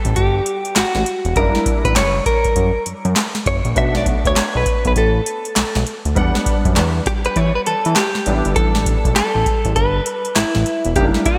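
Slick and bouncy, this new jack swing excerpt at 100 BPM swings its 16ths as an up-front, overdriven analog drum machine pounds out a deep kick, crisp snare, handclaps and metallic hats under gated reverb, while a fat, nasal, detuned sawtooth bass with a plucky filter holds the low end, a clean, picked, direct-recorded electric guitar carries the melody with subtle chorus, and a polished baby grand piano with ensemble chorus moves through A9sus4, F#7b9b13, Bm7 and Em9, all set in a lush hall and a bright 1980s-style digital sheen.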